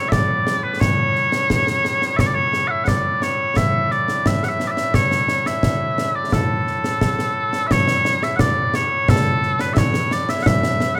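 Mellow, sweet small bagpipes open this stirring, proud excerpt of Scottish pipe music in A major, carrying a continuous, vibrato-tinged solo melody up front at a straight 87 BPM in 2/4, joined at 0.1 s by an acoustic concert snare and bass drum with bright cymbals in a live room, all captured by close, detailed microphones with light reverb as the opening section repeats at 7.7 s.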